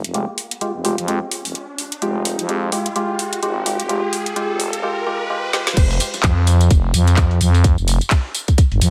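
Aggressive and bouncy, this bass house excerpt in F minor moves at 128 BPM with a swung 16th-note feel. A growling, thick FM bass and a garage drum kit with a woody snare, metallic hats, handclaps, tambourine and crash run throughout, while a hollow, organ-like percussive stab with chorus, phaser and delay punches out an Fmadd9 chord under a filter sweep as an electronic riser builds. A drum fill at 5.5 seconds leads into the drop at 5.8 seconds, where a tight, up-front electronic kick enters alongside a very quiet, gritty, tape-warm sampler-style soul kit, and the stab and riser fall away.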